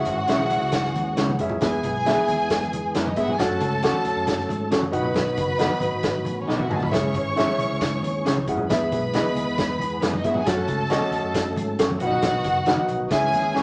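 A vinyl-crackled recording in a roomy, reverberant space carries this urgent, passionate slice of uptempo 1960s-style soul, where a lush, bowed violin section sits up front beside a punchy vintage drum kit with a pumping room sound and a rolled-off top, plus a drum fill near 6.5 seconds. Grand piano accompaniment and a round, amped fingered electric bass drive the minor-key progression, while a fat, lightly overdriven tonewheel organ with key click, chorus vibrato and a slow rotary speaker holds sustained chords in the background. A slightly broken-up, lo-fi electric guitar adds picked stabs from 0.3 seconds, and very quiet, bright, damped congas fill out the percussion.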